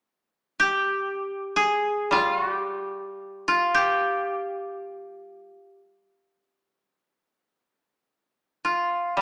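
A koto carries the melody from 0.6 seconds, its bright, woody fingerpicked tone sitting up front within a narrow range from F4 to Ab4. A second koto joins at 2.1 seconds with an accompaniment on a low G3, set a little beneath the lead, and both play on to the close at 9.2 seconds. This brief excerpt of Japanese traditional music feels calm and austere, tuned to A4 = 439 Hz. The two plucked parts ring inside a wet, hall-like reverb, though the overall sound has the character of a small speaker. It is a short passage cut from a longer piece.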